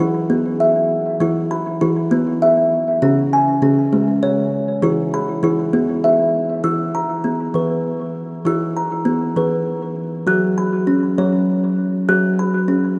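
Bathed in a cathedral reverb with a 6.2-second tail and the soft grain of cassette tape, this dreamy, calm fragment of meditative world music drifts at 66 BPM in a straight 6/8 in E Lydian, as a solo kalimba, woody and hollow with a mellow fingertip pluck sitting up front through a tape echo, rings out across a range from C#3 to F#6 over harmony that moves from E5 to C#5, back to E5 at 4.8 seconds and on to F#5 at 10.3 seconds.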